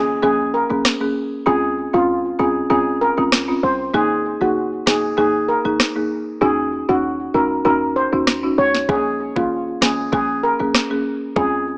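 Dancehall in a hypnotic, tough mood: a shimmering steel pan lead with tape echo and a woody, rustic folk marimba float over a punchy, tight 808-style bass, while an overdriven electronic drum kit with a knocking kick, sharp snare and rim click enters at 0.8 s, all heard through light reverb and a small speaker sound in this short cut from a longer piece.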